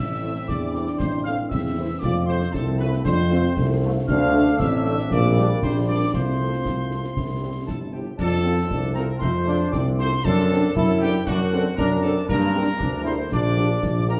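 Heard from further back in a large, reverberant studio, this festive, spirited military-style march for wind band is cut from a longer piece and moves in a straight two-beat stride. A trumpet section carries the melody with a distant, roomy classical tone, while a pure piccolo with vibrato and a soft attack plays a second line high above. Beneath them, a tight trombone section holds sustained chords in the background, a very quiet French horn section adds gentle accompaniment, and a mellow tuba sits up front on the bass. A dark, smooth-topped euphonium joins on another second line at 0.5 s and stops at 7.9 s, while a closely recorded acoustic concert snare, concert bass drum and clash cymbals with shadowy cymbal colour mark the march throughout. The harmony opens on A minor before settling into F major, and a new section begins at 8.2 s.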